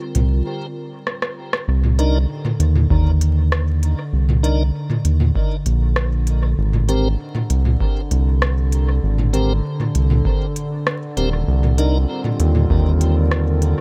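Ambient dub in a meditative, spacious mood, heard as a short section cut from a longer piece, with a steady, straight pulse and vinyl crackle hanging over it throughout. A warbling, nostalgic pad holds dark, lo-fi chords with slow attacks and long releases, softened by chorus and its own reverb, drifting between Abmaj7 and Cm7. Beneath it, a round, deep analog bass sits up front with an evolving, ring-modulated edge, while a crisp, tape-toned electronic kit of hi-hat, rim click and toms trails dub echo, briefly breaking at 0.5 seconds before a fill at 1.1 seconds. Clean, piping tonewheel organ stabs arrive at 2.0 seconds, turning through a slow rotary speaker and scattering into dub echo. An overdriven electronic kick joins at 2.9 seconds, adding a weighty low thump under the hazy, echoing arrangement.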